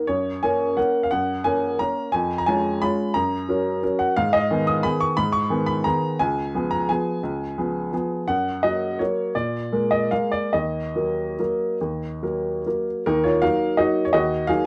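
In a rubato 3/4 lilt that drifts between 136 and 189 BPM, this bittersweet, nostalgic classical piano waltz in E-flat minor, tuned to A4 = 442 Hz, unfolds as a brief fragment of a longer piece. A solo upright piano spans Db2 to Eb6 with an intimate, woody, up-front tone, and its audible action noise lends a natural closeness. The harmony moves from Gb through Abm and Db7 to a Bb7 that settles on Ebm at 10.5 seconds, all in a dark production with light reverb.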